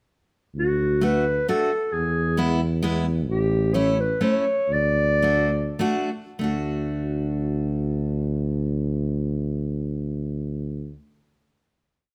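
A clarinet and a tuba open this short, festive alpine folk piece together at 0.6 s, in the lilting 3/4 of an alpine dance band. The mellow, roomy clarinet carries a song-like melody built from small motifs in a classical style. Beneath it, the soft-attacked tuba marks the main beats with root and fifth. At 1.0 s a bright, full-bodied picked acoustic guitar joins with off-beat triad chords, giving the bouncy dance its lift as the harmony moves from D through E and A7 back to D. The rubato feel becomes a clear slowing toward the cadence; the clarinet finishes its phrase at 5.8 s, and the tuba and guitar ring out on the final chord. Close, detailed microphones and light reverb keep the small ensemble intimate and present.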